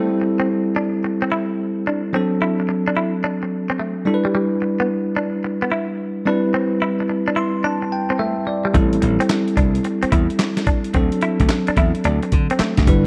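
Light reverb gives this excerpt a gentle sense of space, with a bell-like tine electric piano sitting up front. It's a confident, bouncy new jack swing R&B groove at 109 BPM in 4/4, swung on the sixteenths and moving through Am7, D7, G6 and Cmaj7. The piano carries the accompaniment from the start alongside a clean, twangy electric guitar riff, picked, recorded direct, compressed and coated in lush chorus. A piano fill at 7.1 seconds leads into the arrival of a gritty, tape-warm sampler-style drum kit at 8.7 seconds, with a thumpy kick, medium-tuned snare, hi-hat and handclaps pressed close and compressed. A punchy slap bass joins at 8.8 seconds, anchoring the low end as the Am7 to D7 changes return.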